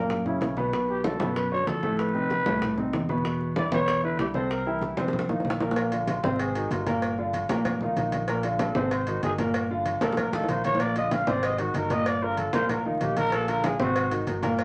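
Sunny and danceable, this brief cut from a longer Afro-Cuban jazz piece sets a present, long-sustaining grand piano and a fingered electric bass over tight, high-tuned bongos with cowbell and damped, low-tuned congas, while a dark, raspy, growling trumpet enters at 0.9 seconds and takes a breathy, gritty solo from 5.8 seconds as drum fills punctuate the groove, all within a wet studio ambience and a layer of vinyl crackle.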